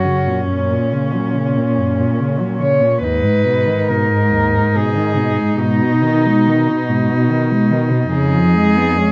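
Close, detailed microphones and light reverb frame this tender, lyrical classical passage for four bowed cellos, each played con sordino by a single player for a dark, veiled tone, all sounding together from 0.0 to 9.1 seconds of a longer piece. At a rubato 70 BPM in 3/4 and tuned to A4 = 444 Hz, the up-front melody cello sings with light vibrato and a soft attack, while a close second line with light vibrato and a close accompaniment cello with vibrato fill the middle. Beneath them, an up-front bass cello with vibrato and a smooth top supports harmony moving from F# through G#m/D# and G#m to C#7/E#.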